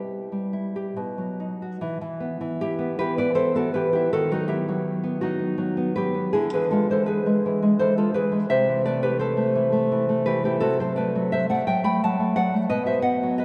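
A warm, thumb-plucked nylon-string guitar plays alone and up front in this melancholic, wistful romantic classical excerpt in E minor, moving in a rubato 3/4 at 69-91 BPM through chords such as Em, B/D#, E7/D and Am/C before settling on B at 12.7 seconds, all bathed in the long, wet reverb of a church.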